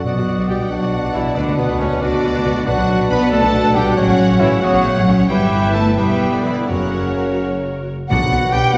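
In a rubato 6/8 pulse of 82-96 BPM counted in dotted quarters, this fast, dramatic romantic movement for symphony orchestra moves restlessly through B minor, cut from a longer piece. A lush, vibrato-rich violin section carries the melody. A second violin section with a smooth top, a silver concert flute with an airy, crisp attack and a distant clarinet weave second lines over a background viola section and a close-miked bassoon. A mellow French horn section holds sustained chords while a clear trumpet adds stabs, and the bass is anchored by a focused double bass section and a close cello section that sits loudest of all the parts. Very quiet timpani, struck with soft mallets, sound at 0.0, 2.7 and 6.7 seconds, and a wet scoring-stage reverb places the orchestra further back in the room.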